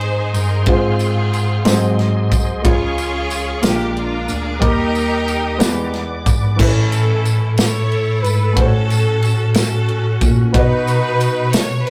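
A bright, lush string section leads this slow gospel passage, carrying an intense, vibrato-rich melody over a warm baby grand piano, a reedy tonewheel organ holding sustained chords through a fast-spinning rotary speaker with chorus vibrato, and a mellow, clean tine electric piano playing the bass line up front. A natural country drum kit, with a punchy kick, a medium-tuned snare, ride and crash cymbals, sits prominently alongside, and a jingly, close tambourine enters quietly at 0.3 seconds. The mood is reverent and hopeful, moving in a gentle, straight-feeling 6/8 as the harmony passes through dominant-seventh chords toward a shift into a new key. At 6.6 seconds the organ drops out and the music lifts into the raised key, with strings, piano, electric piano, drums and tambourine carrying the repeated phrase onward. The sound is that of a rough rehearsal-room recording in a modest booth ambience, cut from a longer piece.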